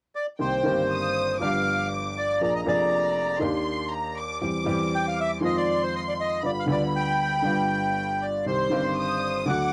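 A reedy, dark bandoneon carries the melancholic, tense melody of this rubato tango in C minor at 119 BPM, entering at 0.2 seconds over a clear concert grand piano with deep bass and a smooth, vibrato-rich violin section that joins at 0.4 seconds, the strings and piano colored by cassette tape, all in a home recording with light reverb cut from a longer piece.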